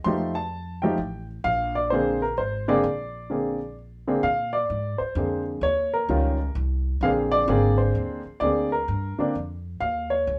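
Warm and swinging, this short jazz fragment from a longer piece moves at 129 BPM in 3/4, with a lilting swing on the eighth notes in B-flat mixolydian. A baby grand piano carries the melody from the very start, ranging from D3 up to C6 with an intimate, natural tone, short sustain and audible action noise that places it close to the listener. Beneath it, a pizzicato upright bass on gut strings plays from Ab1 to Bb2, sounding woody and thumpy, also up front but sitting a little lower in the mix. The harmony moves through F9 and Bb9, then Eb7 with its third omitted, back to Bb9 and onto an Eb7sus2 near 9.8 seconds. The phrase repeats once, with the second pass beginning at 4.2 seconds. The band performs live together in one studio room, with moderate ambience and a half-second reverb tail.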